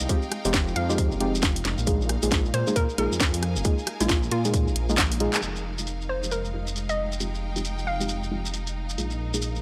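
A swung two-step garage groove at 135 BPM in F minor sets a late-night, soulful mood, with a cracking, overdriven house kit of handclaps, rim clicks, bright hats and snare riding up front, a tight electronic kick that drops out at 5.1 seconds, and a grainy, close shekere. A deep, rumbling detuned saw bass pumps under a clear, lush bowed string section, while a soft, nasal chord stab with chorus and tape echo trades between Fm9 and Bb7sus4, and a hollow, bouncy square-wave pluck carries the melody. After a drum fill and band accent, the second section opens at 5.4 seconds with a filter sweep on the stab, all within a dry, gritty hardware sound with transformer saturation and light reverb.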